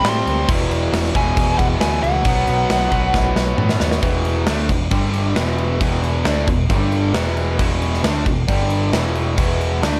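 A straight 4/4 hard rock beat from a big, roomy acoustic drum kit with punchy kick and bright cymbals drives this energetic, anthemic fragment of a longer piece, as a double-tracked, overdriven rhythm guitar riff and a growly picked bass play throughout, while a dark, smooth lead guitar with plate reverb sings a high melody until 3.5 seconds and a drum fill runs from 3.1 seconds into a new section at 4.0 seconds.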